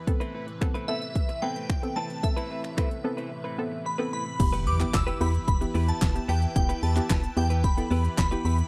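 Punchy, overdriven pop drums with a deep snare and metallic hats drive this energetic, bittersweet dance-pop excerpt at 111 BPM in E minor, where a phased sawtooth supersaw pad and a bouncy, detuned square-wave pluck pump against the beat, and a bright, direct-recorded clean electric guitar riff glistens through lush chorus; a shimmering, dreamy FM bell melody with tape echo enters at 0.9 seconds, and after a break from 3.3 seconds a dark, organ-like FM bass arrives at 4.4 seconds beside a background electronic impact, captured in a dry, close 1970s-style studio sound.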